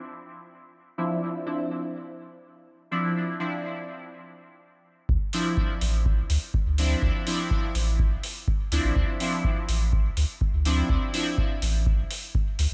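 A straight 4/4 pulse at 124 BPM drives this cavernous, deep dub techno cut in D minor, which opens with a juicy, detuned polysynth playing resonant stabs on a Dm9 chord from 1.0 seconds, its filter sweeping until the groove lands, colored by chorus, phaser, sidechain pumping and dub echo. At 5.1 seconds a round, soft sub bass with its own sidechain pumping arrives alongside a dry, up-front electronic kick, with metallic hi-hats joining at 5.3 seconds, both drums set in a small room reverb. Light digital ambience and a bright 1980s-style digital sheen, tempered by a low-pass filter, frame this brief fragment of a longer piece.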